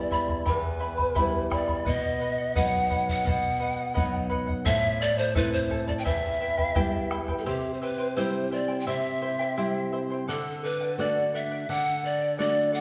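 A breathy, hollow pan flute carries the melody up front, its chiff and vibrato giving each phrase a woody bite, in this festive, earthy Andean folk excerpt at 86 BPM in a straight 2/4. A shimmering fingerpicked charango with double strings and a bright, classical nylon-string guitar accompany it through chords moving from Em to B and Am before shifting to C and D. A round, dry bombo drives the first section until 7.4 seconds, all set in the reverberant glow of a recital hall.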